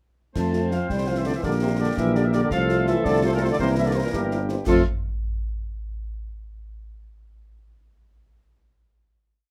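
Festive and proud, this very short military-style march for wind band in 6/8 sets a dark, distant trumpet section on the melody, with a clear, vintage-toned euphonium in the background doubling the tune at the octave. A warm woodwind section with light vibrato, a trombone section holding sustained chords, and a smooth-topped French horn section playing tight after-beat chords fill out the harmony, while a mellow tuba sits up front with bass on the beats. A close marching snare rides over concert bass drum on the beat with dark clash cymbals, all in light reverb with a faint mains hum, before the band closes on a final chord at 4.7 seconds.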